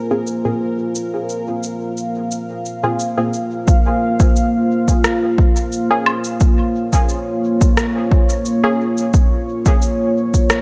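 Spacious and meditative, this ambient dub excerpt moves at 88 BPM in a straight 4/4 in Bb minor, tuned to A4 = 438 Hz. A deep, moody pad built from sawtooth, sine and triangle waves with a sub octave, wave-folding and ring modulation sits up front, holding slow-attack chords with a long release, chorus and built-in reverb. Beneath it, a muted, detuned chord stab with a fast filter pluck and short decay carries chorus and dub echo, and a filter sweep runs across it during the opening. A bright, resonant bubbling texture of random filter steps hovers in the background with chorus and reverb until 3.7 seconds. Just after the start, an electronic cabasa, rim click and woodblock with a tape-warm character echo through a large room, and at 3.7 seconds a punchy, layered electronic kick arrives up front as the harmony moves from Fm/Bb to Bbm7, all under a light reverb.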